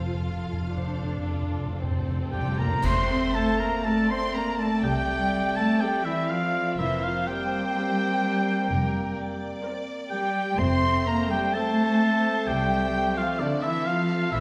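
A punchy solo oboe carries a second line from 2.3 seconds in this lyrical, warm slow romantic movement for symphony orchestra, cut from a longer piece in F major at 63 BPM with a free, rubato feel. Lush bowed strings hold it together throughout: a focused, vibrato-rich violin section sings the melody over a darker, distant second violin line, a smooth, even viola section and bassoon accompany, and soft-attack cellos and deep double basses anchor the bass. Round timpani on soft mallets open the passage before dark cymbals and bass drum mark an accent at 2.8 seconds, while an airy flute, a mellow clarinet, a distant horn section holding chords and a dark trumpet adding stabs join in, all bathed in a wet scoring-stage reverb.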